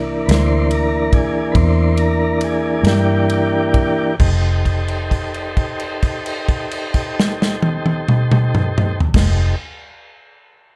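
Slow blues in 12/8 at 44-49 BPM, soulful and rollicking, in which a smooth, clean tonewheel organ turning through a slow rotary speaker sits up front with sustained chords and a solo that slows over the first 4.2 seconds before the harmony moves from C9 to F9 under a held note, all carried by a round, foam-muted vintage fingered electric bass and an airy, polished acoustic drum kit with a punchy kick, medium-tuned snare, ride, crash and toms, in a dark production with light reverb.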